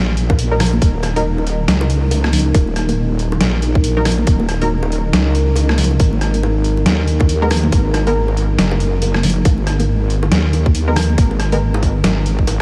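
A heavy, cavernous mix sits in a light reverb, with a saturated, detuned sawtooth-and-sine wobble bass pushed up front from the very start. This is deep dubstep in Eb minor at 139 BPM, felt in half-time with a swung 16th-note lilt, and the short passage is cut from a longer piece. A tight, layered electronic kick sits up front alongside a gritty, pitched-down sampler-style kit of hi-hat, rim click and a medium-tuned snare that sounds tape-warm and re-recorded in a small room. Hard-handed bongos and congas sit bright and acoustic in the background, trailed by dub echo. A moody, slow-attack pad with chorus and its own reverb holds sustained chords low in the mix. A muted, filter-plucked chord stab with chorus and dub echo recurs in brief hits at 0.5, 4.0, 7.4 and 10.9 seconds as the harmony moves toward Absus2 at 6.0 seconds.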